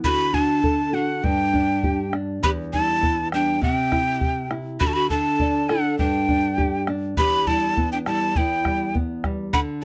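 A straight, even 2/4 pulse from a round bombo anchors this earthy, festive Andean folk excerpt. A bright cane quena, tongued with vibrato and airy chiff, carries the melody up front over a small, fingerpicked nylon-string guitar, while a bamboo pan flute with a crisp attack adds a second line just beneath it. The close, detailed sound sits in light reverb as the chords cycle through D, G5, Em and C.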